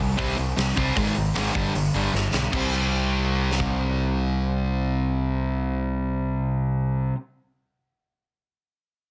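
Two picked, overdriven electric guitars, one sludgy and up front and the other a dark, hollow-bodied semi-hollow, open this raw, aggressive punk rock excerpt with a riff on C5, Ab5 and G5 over a growling, overdriven electric bass, while a big, mid-forward acoustic drum kit with a tight kick, medium-tuned snare and rolled-off top joins at 0.2 seconds, fires a fill at 2.1 seconds and stops at 3.7 seconds, all in a dry, dense, heavily limited mix.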